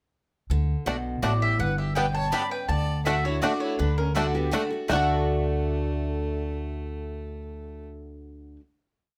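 A mellow, woody mandolin carries a fiddle tune in running eighth notes from 1.2 seconds through this lively, rustic bluegrass piece in 3/4, joined by a smooth bowed fiddle harmony line mostly in sixths, a twangy banjo's three-finger rolls and off-beat vamping, a second mandolin's background chop on the off-beats, a bright picked steel-string guitar alternating bass and strum with bass runs, and a thumpy, up-front upright bass playing root and fifth with walk-ups, all caught by close, detailed microphones in light reverb before settling on a final chord at 4.9 seconds.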